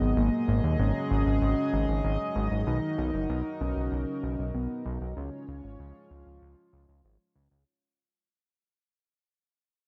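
This nostalgic, nocturnal synthwave passage opens with three parts sounding together: a fat analog bass up front, a shimmering chorused pulse-width pad holding sustained chords, and a soft octave-layered synth lead carrying the melody. The lead is round and full-bodied, built from triangle and sine tones with a sub octave beneath, and colored by chorus, phaser, vibrato and tape echo. The retro pad evolves through pulse-width modulation and a touch of ring modulation, with a mellow, soft-attack glow. Beneath them, the thick, detuned bass blends wave-folded sawtooth and triangle tones with a filter sweep. The harmony moves from G#m7 to Bmaj7 at 2.7 seconds and to C#add9 at 5.2 seconds, set in a lush hall reverb within a dark, warm production. Cut from a longer piece, the passage starts fading out at 1.0 seconds.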